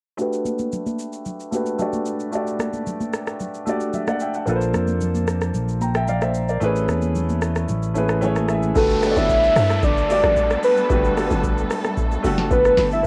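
Relaxed and soulful, this amapiano excerpt opens with a warm, open baby grand piano carrying Gmaj9, Bbmaj9 and Amaj9 chords through a low-pass filter sweep and cassette tape grit, over a booming analog drum machine with a deep kick, crisp snare and metallic hats, while damped, high-tuned congas sit in the background and a punchy, amped fingered electric bass joins at 4.5 seconds. The kick drops out briefly as a piano fill plays, and at 8.8 seconds the drop arrives: a round, mellow octave-layered synth lead with chorus and vibrato takes the melody up front, backed by dark, woody, distant strings, a hollow, bouncy log drum bass and an electronic downlifter. The home cassette recording is dry, with little reverb, and the piece is cut from a longer track.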